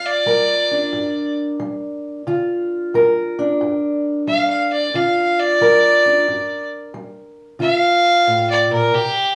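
A clear, earthy fiddle carries the melody with light vibrato, bowed by a single player and sitting up front yet with a slightly distant quality, soloing from G4 to F5 across the whole 9.3 seconds of this short cut from a longer piece. Beneath it, a fingerpicked parlour-style steel-string acoustic guitar with old strings gives a dark, woody, boxy accompaniment over a Gm7 chord. The result is brooding, soulful acoustic country blues in G minor at 90 BPM with a swung 4/4 feel, captured live in a small room with modest reverb.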